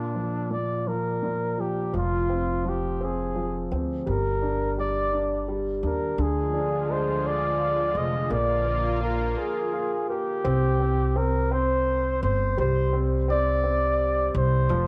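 A mellow, vibrato-laden flugelhorn sings a jazz-style solo line over a polished grand piano with long sustain, opening this excerpt of a melancholic, aching six-eight pop ballad at a slow 57 BPM. A woody pizzicato upright bass enters up front at 1.9 seconds, and from 6.2 to 10.4 seconds a lush, detuned unison sawtooth pad adds thick, warbling chords with a bright chorus shimmer. The flugelhorn carries a cassette-tape colour and analog delay, while the whole is set in a moderate studio reverb with the intimate character of a home cassette recording, and a brief break arrives at 9.4 seconds before the passage moves on.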